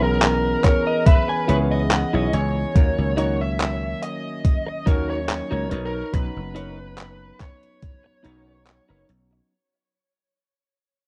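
A rough, cassette-worn home demo mix with light reverb frames this nostalgic, melancholic vaporwave fragment: a punchy, growly thumbed slap bass with tube saturation and a thumpy, overdriven electronic kick sit up front beneath the handclaps and hi-hat of a detuned 8-bit drum machine, while a barky tine electric piano through a combo amp spreads lush chorus over C#m7, D#m7 and Bmaj9, a dark, compressed clean electric guitar plays its riff with analog chorus, 12-bit sampler grit and tape echo, adding a fill from 0.2 to 2.8 seconds, and a bluesy distorted lead guitar carries the melody through the same grit and echo as the mix fades out from 0.5 seconds.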